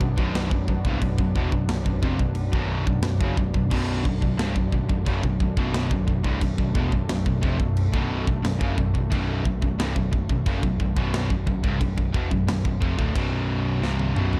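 This dark, epic heavy metal excerpt opens at once on an 89 BPM groove in B phrygian, anchored on B minor, with a polished, up-front drum kit (tight kick, medium-tuned snare, toms, and bright crash and china cymbals) driving three picked guitar riffs set further back: one bright and double-tracked, one high-gain, and one sludgy and overdriven. Beneath them a growly, amped bass rumbles low, while a detuned sawtooth pad with a soft attack and chorus holds smooth sustained chords in the background. The production is dry and shadowy, and a drum fill at 13.8 seconds closes the cut from a longer piece.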